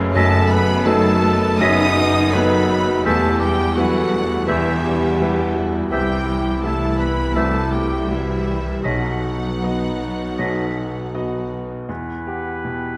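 Tragic and passionate, this short E minor passage from a romantic movement for piano and orchestra moves at a rubato 77-86 BPM in 4/4, its harmony turning from B7/F# through Em, C and B before settling back on Em at 11.9 seconds. A bright, brilliant grand piano carries the melody up front, intimate and polished with long sustain and audible action noise, ranging from E1 to E5 across the full 13.0 seconds. Behind it, a warm, lush symphonic violin section also plays the melody high in the background with vibrato, while a second, distant violin section adds a clear, even line in the same register. A rich, close viola section and a mellow bassoon fill in the accompaniment, as a focused cello section and a clear double bass section ground the bass. The woodwinds weave quiet second lines, with a pure, hollow flute, a vintage-tinged oboe and a punchy clarinet, while a clear trombone section and a very quiet, dark and roomy French horn section hold sustained chords. 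The orchestra drops away around 11.5-11.7 seconds, leaving the piano, flute, oboe and clarinet to close the excerpt in a moderate scoring-stage reverb.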